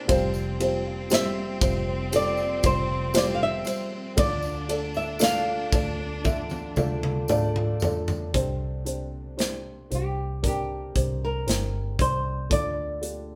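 A slow, straight 4/4 pulse at 58 BPM carries this heartbroken pop ballad fragment, taken from a longer piece, with a polished modern drum kit up front, its punchy kick and bright cymbals framed by an airy studio room, while a close, dry tambourine jingles in the background until about 8.3 s. Beneath it, a vintage electric bass played with the fingers and foam-muted gives a round, amped low end. A felt-muted upright piano supplies soft, intimate accompaniment with short sustain, and a thumb-plucked flamenco guitar sits behind it, spinning dark arpeggios. From 1.1 s a second, fingerpicked flamenco guitar takes the melody up front, its tone warm and emotional, while a bowed chamber cello section, present from the very start, adds a dusky second line with gentle vibrato and soft attack until 7.8 s. A drum fill leads from Fsus2 and Dm into a new section on Csus2, all heard as a band playing together in one room with moderate reverb.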